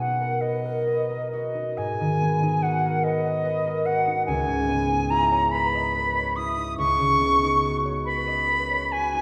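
Dreamy and luminous, this short excerpt from a longer impressionist piece for flute and harp drifts in a slow, rubato 6/8. The silver concert flute carries the melody within a range of D#5 to D#6 with a pure, tongued tone and vibrato, sitting up front yet carrying a distant quality. Beneath it, the concert harp provides fingerpicked accompaniment across a broad span from C#2 to D#5, its strings ringing with a warm resonance close to the listener. The harmony glides through lush extended chords, Bmaj7, G#m9, C#m9 and Badd9/C#, across the full 9.2 seconds that both instruments play together. A wet concert-hall reverb and a listening position further back in the room wrap the duo in a soft haze, with a faint mains hum beneath the sound.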